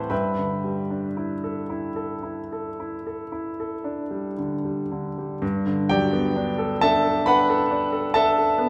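This is a brief passage of impressionist classical solo piano, hazy and luminous in mood. It unfolds in an unhurried five-beat metre with a freely breathing rubato feel. The grand piano is the only voice, sounding from 0.0 to 8.7 seconds across a span from G2 to D6. Its tone is clear and natural, placed up front and intimate, with the mechanical noise of the action audible beneath the notes. The opening sixth-and-ninth chord gives way at 5.4 seconds to a major ninth chord as a new section begins, while a wet recital-hall reverb lends a gentle haze around the instrument.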